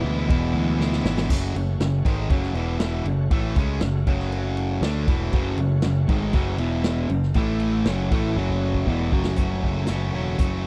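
A dry, close recording with a 1970s studio character carries this brooding, driving classic rock excerpt in F# minor at 119 BPM, where an up-front, bright distorted electric guitar riff sits over a growling, overdriven picked bass and a vintage drum kit with a punchy kick, dark cymbals and a medium-tuned snare. A crunchy second guitar plays its riff in the background, dropping out at 1.3 seconds and returning at 5.3 seconds, while a very quiet tonewheel organ holds shouting, lightly overdriven chords through a slow rotary speaker with key click. Drum fills at 0.8 and 8.4 seconds mark the turns as the harmony moves around F# minor, E and A power chords.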